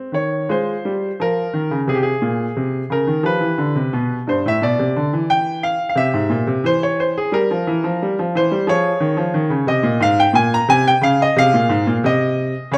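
Classical, baroque-style suite movement for solo baby grand piano, serene yet dance-like, moving in a flexible, rubato 4/4 through a short excerpt cut from a longer piece. The bright, brilliant piano sits up front with an open tone, ranging from G2 to Bb5 as the harmony passes from F minor through G7 and C7, returning to F minor before settling on Ab near 11.3 seconds. Close, detailed miking captures the instrument within a moderate recital-hall reverb.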